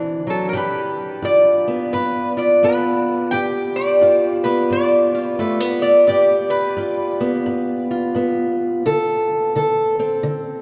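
Drenched in a cathedral-like reverb, this short clip from a longer piece sounds as if it were played in a vast, echoing hall. It is laid-back, soulful acoustic country blues at 86 BPM with a swung 4/4 feel. A dark, boxy parlour-style steel-string guitar fingerpicks the accompaniment from D7 to G7 throughout the 10.6 seconds, while up front a lap resonator guitar, played with slide and fingerpicks, sings a metallic, nasal melody from 0.3 to 7.9 seconds before the clip settles on a D5 at 8.9 seconds.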